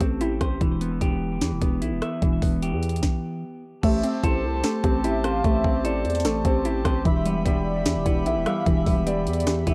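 A brooding, hard-hitting trap track in A minor at 149 BPM with a half-time feel opens with a clean, fingered semi-hollow electric guitar playing low-pass-filtered, delayed arpeggios over a growling, buzzy 808-style bass, an up-front, overdriven trap kit with knocking kick and sharp snare, and a brief hollow square pluck, then after a stop at 3.0 seconds the bouncy pluck returns at 3.8 seconds alongside a velvety, gliding synth lead with chorus and delay and reedy, breathing harmonium chords, the whole mix carrying a worn, warbling cassette-tape character with little reverb.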